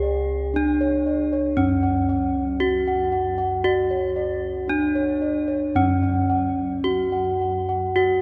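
A cathedral-like reverb of 6.1 seconds fills a church or concert hall around this shimmering, ceremonial gamelan passage, cut from a longer piece and lasting 8.2 seconds. Up front, a bright bronze metallophone struck with a horn mallet rings out the melody. Two sets of round, beating bossed gongs play throughout, one in arpeggios above it and the other carrying the bass.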